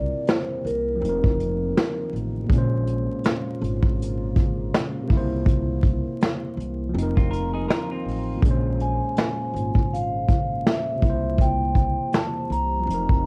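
Melancholic and nostalgic, this lo-fi hip hop excerpt in Bb minor moves at 81 BPM with a swung 16th-note feel. It rests on a mellow tine electric piano, a woody, thumpy pizzicato upright bass and a very quiet, deep, moody ambient pad, while a vintage brush drum kit sits up front with a tight kick and rolled-off top. A soft-mallet vibraphone with a metallic ring and cassette-tape colour carries the melody briefly at the start and again from 8.8 seconds, a clean, picked electric guitar with spring reverb and analog delay adds a short second line at 7.2 seconds, and light reverb, home cassette character and vinyl crackle give it a worn, homemade feel.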